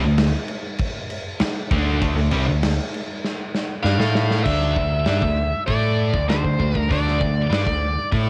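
In a straight four-four feel, this menacing, aggressive hard rock fragment is built on a crunchy overdriven guitar riff, a tight distorted guitar tucked in the background and a very quiet double-tracked distorted guitar that drops out at 4.5 seconds, all under a growly, up-front overdriven picked bass and a big acoustic rock kit with a punchy kick, a medium-tuned snare and bright crash and hi-hat cymbals, whose fill from 3.2 to 4.5 seconds runs alongside a high-gain lead guitar melody entering at 3.8 seconds, with light reverb and small room ambience on a home cassette recording.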